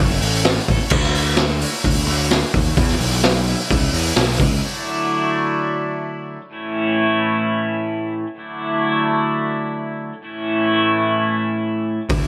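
Bright, 1980s-style digital production and a lush hall reverb frame this upbeat yet wistful indie rock excerpt, where a clean, twangy, compressed electric guitar riff with subtle chorus moves through A, Dadd9 and E over a gritty, saturated garage drum kit with a boomy kick and a round, overdriven picked fuzz bass, until the drums stop at 4.5 seconds and the bass at 4.6, leaving the fingered guitar alone before both return briefly at 12.1 seconds.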